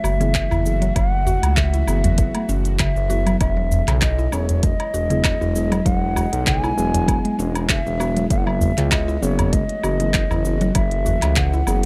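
Mystical and hypnotic, this organic downtempo excerpt at 98 BPM in F# dorian sets a pure, bamboo-toned bansuri melody with vibrato and delay over a tense, detuned bowed-like drone, woody mallet-like synth plucks with phaser and 12-bit grit, muted felt-like synth keys with sidechain pumping, an up-front saturated synth bass, a smooth-hatted organic electronic kit with handclaps, shaker and woodblock, a deep overdriven electronic kick and a small background udu, all moving between F#m7 and Emaj7.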